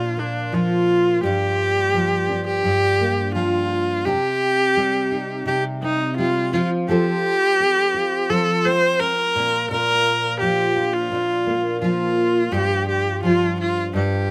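Acoustic pop in G minor at 85 BPM, this reflective, tender fragment of a longer piece moves through Bb, Gm7, Cm and F in a straight 4/4. A double-tracked nylon-string guitar, deep in its classical tone, is fingerpicked up front with audible finger squeak, while a single bowed viola carries the melody with a clear, focused, close sound, vibrato and a slapback echo. Recorded outdoors with little reverb, both parts play throughout the 14.3 seconds, giving the sound an intimate, open-air dryness.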